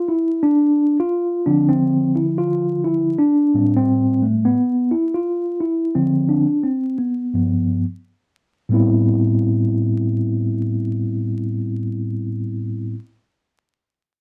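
A mellow, clean tine electric piano sits up front, played through its built-in speakers, carrying this cool, nocturnal hip hop excerpt on its own with a swung sixteenth-note feel over Dm7, Am7, Dm7 and G7 before settling on Am9 at 8.7 seconds, captured in a dry, close 1970s-style studio sound with light reverb and vinyl crackle.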